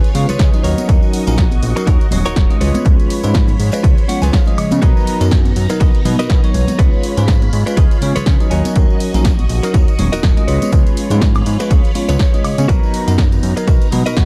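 Dark, warm digital ambience surrounds this joyful, funky 14.3-second excerpt of filtered disco house at 122 BPM in Db mixolydian, swung on the sixteenths, where an up-front punchy electronic kick and a punchy analog drum machine with hi-hat, snare and woodblock play alongside a fat, detuned sawtooth bass with a filter sweep, while tambourine and congas sit softly in the background. A lush vintage string machine holds sustained chords through phaser and ensemble chorus, and a bell-like, bright tine electric piano with phaser and 12-bit sampler grit plays accompaniment over a Db7, Ebm7 and Cbmaj7 progression. A clean, picked, direct-recorded electric guitar with gritty sampler texture plays a riff with fills at 0.0, 3.8 and 8.0 seconds, and sidechain pumping breathes through the strings, guitar, piano, bass and percussion.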